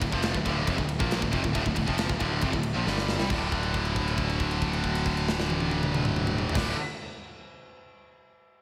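A big arena sound opens this short heavy metal clip, cut from a longer piece, with moderate reverb and a small room ambience around the band. At 137 BPM in a straight 4/4 and D minor, the mood is epic and relentless. Two bright high-gain electric guitars play the riff together, one heavy and up front, the other scooped, both distorted and touched with slapback echo. A growling picked electric bass, overdriven and punchy, carries the low end, while a tight acoustic drum kit sits up front with a medium-tuned snare, a tight kick and a rolled-off top, using crash, ride and toms. A drum fill at 2.9 seconds leads into a held note on a D5 chord from 3.3 seconds to 6.5 seconds, and the clip ends at 6.8 seconds.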